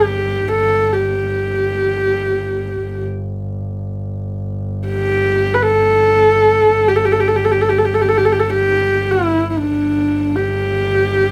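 Played in free time, this short cut from a longer Mongolian folk piece feels vast yet galloping in spirit. A single horsehead fiddle carries the melody for the full 11.3 seconds, moving between D4 and B4 with light vibrato, portamento and a soft attack, its husky horsehair tone and airy bow sitting intimate and up front. Beneath it, a muted double bass, bowed by one player, holds a drone on G1 throughout, its veiled, dark sound kept low in the balance with a smooth top and its own gentle vibrato. A moderate small-room reverb lends the pair a close, modest space. The fiddle's voice leads the whole passage, while the bass lies behind it as a shadowed floor.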